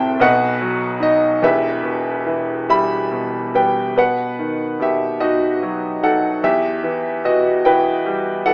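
Classical solo piano in E minor, reflective and dark, moving at a slow, rubato 49 BPM in 6/8, in a short cut from a longer piece tuned to A4 = 439 Hz. A bright baby grand piano carries everything alone, its brilliant, up-front tone ringing with long sustain across a range from E1 to B5, shifting from B to Em and then, after a new section begins at 4.0 seconds, from B to Emadd9 at 6.4 seconds. A moderate recital-hall reverb surrounds the instrument, though the overall sound has a small-speaker quality.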